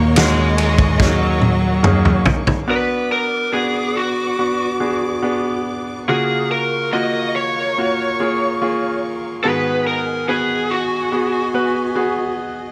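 An overdriven lead guitar, picked through a small cranked amp, carries the melody up front in this tender, emotional pop ballad excerpt, its tone warm and close. A bright concert grand piano with a brilliant top, deep bass and short sustain plays the accompaniment throughout, while a lush symphonic string section holds soft-attacked, bowed chords beneath it with gentle vibrato and a smooth top. A distant studio violin section adds an expressive second line with portamento in the background during the opening moments. A growly, amped fretless bass with ensemble chorus and a loose indie drum kit, with its punchy kick, medium-tuned snare, ride and toms, support that opening, and the drums play a fill from 1.0 seconds until both drop out at 2.7 seconds. From there the guitar, piano and strings continue over the shifting chords, all set in light reverb and small room ambience.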